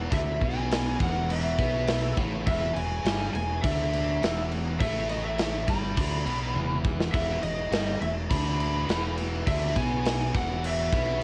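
An anthemic, restless alternative rock excerpt opens on an E chord at 103 BPM, with two picked, overdriven electric guitars, one biting and one crunchy, grinding out a riff in the background over a growling fingered bass with overdrive and a very quiet tonewheel organ holding smooth, clean chords through a slow rotary speaker with audible key click. A dark, overdriven lead guitar from a small cranked amp carries a high melody, while an up-front acoustic drum kit with a punchy kick, medium-tuned snare, bright cymbals and toms plays in a big room and breaks into a fill at 6.6 seconds. The cassette home recording gives the guitars and drums a lo-fi tape grain, set in a small room.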